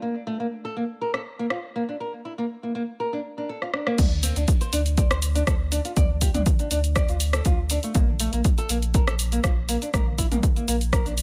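A straight 4/4 pulse at 121 BPM drives this earthy afro house cut, which opens on small, fingerpicked nylon-string guitar arpeggios over a Bbmaj7 chord, softened by a low-pass filter, pumped by sidechaining and trailed by tape echo. At 1.1 seconds a filtered, layered deep house kit joins with dark hi-hats, crash cymbal, rim clicks, shaker and toms, and a drum fill from 3.6 seconds leads into the drop at 4.0. There a punchy, up-front electronic kick and a deep, round sine sub bass with a fast attack and pumping sustain enter beneath the guitar and kit, all in a dry, close mix with little reverb.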